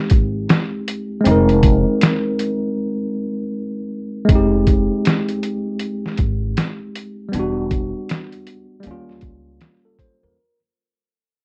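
Nostalgic and reflective, this short lo-fi hip hop clip, cut from a longer piece, sits on a swung 16th-note feel. A tine electric piano carries the chords up front, its slightly out-of-tune tone lightly overdriven and heard as if through built-in speakers, with plate reverb behind it. Beneath it, a pizzicato upright bass sounds woody, dark and growly on steel strings, while a sampler-style drum kit of compressed, pitched-down hi-hat, thumpy kick and medium-tuned snare sits up front with a muffled, tape-warm character. The harmony rests on Fm7 before moving through Em7 and Eb9, with a break arriving at 2.8 seconds and a fade-out taking over from 4.3 seconds. The whole mix carries light reverb and the worn, warbling pitch drift of old cassette tape.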